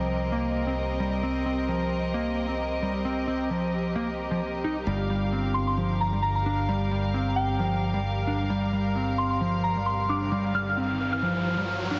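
An overdriven, picked electric bass leads this swaggering, energetic breakbeat cut, playing a warm, amped riff in its upper register through a low-pass filter and digital delay. Beneath it, a second electric bass, fingered and growly with tube saturation and its own low-pass filter, holds down the deep bass line, while a dark chamber string section sustains soft-edged, sul tasto chords with light vibrato, sitting intimate and up front. The groove runs at 132 BPM in 4/4 with a slight swing on the sixteenths, in G minor, moving from Cm7 to Gm7. At 5.5 seconds a soft FM synth bell enters with a mellow, decaying melody high above, colored by chorus, a telephone filter and digital delay, and an electronic riser builds in from 9.9 seconds. The whole mix is bathed in a lush hall reverb and squeezed into a heavily compressed, radio-like sound, and the excerpt is cut from a longer piece.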